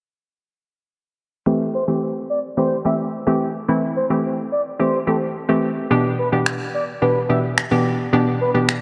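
A dreamy mix soaked in lush hall reverb frames this upbeat, summery dance-pop excerpt, where a hollow, bouncy square-wave pluck with chorus and a filter sweep sits up front from 1.5 s, a smooth, expressive synth lead with vibrato and tape echo carries a dark, sustained melody above it, and layered, overdriven electronic finger snaps join at 6.5 s, shortly after the harmony has moved from Am7 to Em7/B.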